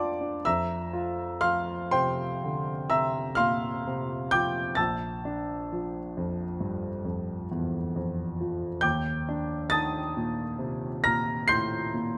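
Close, detailed microphones capture a clear concert grand piano up front, its natural tone set in light reverb that leaves the sound luminous and hazy. This short cut from a longer classical piece is impressionist solo piano in F major, moving in a slow, rubato 9/8 at roughly 39-46 dotted-quarter beats per minute. The piano plays alone throughout its 12.2 seconds, spanning from a deep bass at Bb1 up to C7 in the treble. An F5 chord sounds at 0.4 seconds, and the harmony then drifts to Bbmaj7 at 4.8 seconds and Ebmaj7 at 8.8 seconds. The stretched timing and lush seventh chords give the passage a floating, dreamlike quality.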